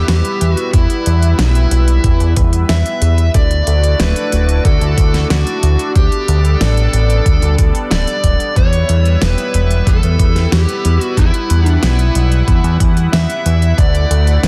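This moody, cinematic synthwave excerpt opens with a dark, smooth electric lead guitar carrying the melody between E4 and E5, its overdriven, picked tone trailed by tape echo, over a shimmering, chorused pulse-width pad holding sustained chords with a slow attack and long release. Underneath sits a fat analog bass, thick and up front, its sawtooth and square-wave tone given tube saturation, a filter sweep and a moving notch, reaching down to D1. A pop drum kit with a fat snare and crisp hats comes in at 0.1 seconds, and a knocking, layered electronic kick joins at 0.7 seconds, both carrying a tape-tinged, produced character. At a straight 92 BPM in E minor, the harmony moves from Em through Dadd9 and Gadd9 before returning to Em. The sound is dry and close, with a dense, heavily limited modern master that keeps the bass and kick prominent.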